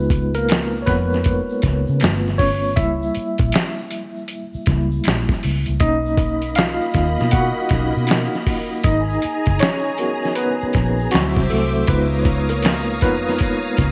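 A worn, slightly out-of-tune tine electric piano sits up front through a combo amp, its medium tremolo giving a mellow shimmer as it carries the lead across the whole 13.9 seconds. This late-night, sultry neo-soul R&B excerpt moves at an unhurried 79 BPM in 4/4, with a lazy swing on the sixteenths and harmony drifting from C#13 through G9, A#dim7, Bmaj7, G#m9 and D9 before returning to C#13. Beneath it, a dark, foam-muted fingered electric bass gives a round, punchy low end, while a compressed, gritty sampler-style drum kit thumps out kick, snare and hi-hat close to the listener. An egg shaker and finger snaps sit distant in a large room, deep in the background. At 5.8 seconds a silky string machine fades in with slow-attack sustained chords and an ensemble chorus, and light digital reverb wraps the whole groove.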